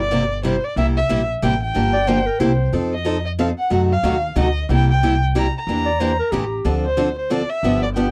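A lilting 3/4 swing at 184 BPM drives this short, playful cut from a longer piece of acoustic string jazz manouche, set in C mixolydian and moving through chords from C7 to F7, F#dim7 and a closing turn to Dm7. An upright bass plays pizzicato on gut strings from the start, woody and thumpy, while a picked steel-string parlour guitar enters at 0.1 seconds with a bright, boxy accompaniment, fresh strings and the odd finger squeak. Above them a single bowed violin carries the melody with a dark, soft-attacked tone, expressive vibrato and sliding portamento. A breathy clarinet adds a mellow second line in two short spots, first at 1.9 seconds and again at 5.9 seconds, with scooped notes and jazz-style vibrato that still lands with a punchy edge. The dry, close studio sound in a 1970s style keeps bass, violin and guitar up front, giving the lively performance an intimate, in-the-room feel.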